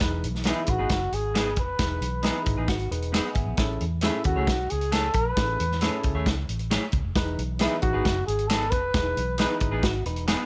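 A light reverb gives this joyful, danceable stretch of 1960s-style soul a gentle sheen: an up-front drum kit with a tight kick and rolled-off top drives it, a round, punchy muted bass sits underneath, and a barky tine electric piano comps. From 0.5 seconds a breathy, dark trumpet carries the melody with vibrato and scooped notes, while a twangy, slightly broken-up guitar through a small old amp adds stabs and very quiet, distant finger snaps tick along. A clean, compressed electric guitar with harmonic tremolo slips in a brief riff at 2.7 seconds and again at 9.8 seconds as the chords move from Emaj7 to Amaj7 and back.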